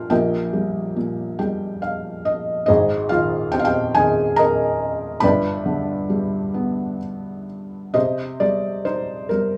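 Wistful and melancholic, this brief classical piece for solo piano unfolds in a lyrical, rubato three-beat lilt, cut from a longer work. A felt-muted upright piano sits up front with a soft, intimate, mellow tone, short sustain and audible action noise, adding a fill between 1.0 and 2.7 seconds as the harmony moves from Eb/Bb through Ab and G before settling on C minor at 8.0 seconds. A small room's moderate reverb gives the sound a natural, close ambience.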